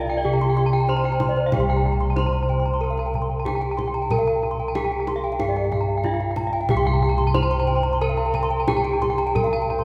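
Balinese gamelan at 93 BPM in C slendro, brilliant and shimmering: three bronze metallophones with paired tuning ringing with beating shimmer carry the melody and arpeggios, up-front round gongs struck with padded beaters hold the bass, a tight kendang adds hand percussion, and a pure, distant bansuri with vibrato enters at 7.4 seconds as a second line, all in a church-like reverb in this short excerpt from a longer piece.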